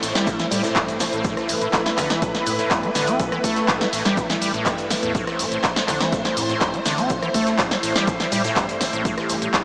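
Lush, vintage string-machine chords pumping against the sidechain open this gritty, hypnotic acid house cut at 123 BPM in A minor, alongside a squelchy, resonant square-wave acid bass riff driven through overdrive, analog chorus and tape echo and an up-front analog drum machine with punchy snare, handclaps, rim clicks, hats and shaker. A punchy electronic kick arrives at 0.3 seconds, while a very quiet acoustic kit with a rolled-off top and a deep, round analog bass sit in the background. The whole track holds on a single A minor chord and is drenched in a huge, dreamy ambient reverb with a small-speaker sound.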